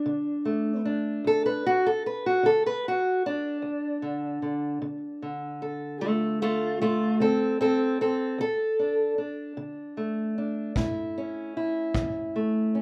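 Acoustic country blues in a rollicking, soulful 12/8 at 50 BPM, this short excerpt from a longer piece centres on a fingerpicked steel-string acoustic guitar with a dark, boxy parlour tone, sitting up front and carrying the melody from D2 to B4 over a D5 chord that moves to A at 10.8 seconds. A punchy, roomy kick drum played with brushes arrives at 10.8 seconds and stops at 12.1 seconds, its rolled-off top heard at a distance. Light reverb gives the recording a touch of space, with tuning set at A4 = 438 Hz.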